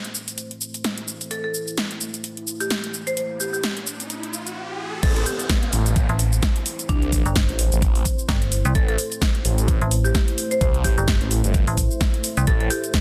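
A swirling, thick detuned saw bass drives this aggressive, swaggering bass house excerpt, its saturated sawtooth tone colored by a phaser and pumping against the kick once the drop arrives at 5.0 seconds. The opening is built on a deep, moody ambient pad holding an A minor chord under a filter sweep, with chorus, a moving notch and built-in reverb, while a big-room dance kit supplies a punchy snare, metallic hi-hats, shaker and crash. From 1.3 seconds a bright, woody marimba struck with hard mallets carries the melody, roughened by vintage 12-bit sampler grit and trailed by digital delay. A riser builds into the drop, where a knocking electronic kick, re-recorded in a small room, lands alongside the saw bass, and at 6.1 seconds a metallic, decaying FM bass joins them, also tube-saturated and pumping. The sound is dense and heavily limited, with a light digital ambience and the dance kit and basses pushed up front.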